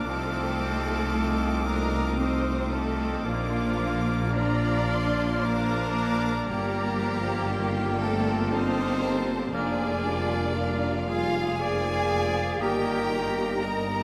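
In a rubato 3/4 at 58 BPM, this serene, tender slow romantic orchestral movement sets expressive violins with vibrato on the melody over a second violin line, an airy flute, a very quiet cor anglais and distant clarinet, a mellow French horn section holding chords, clear trumpet stabs, background violas, and lush cellos with an up-front double bass section on the bass, all in a vast, echoing cathedral reverb.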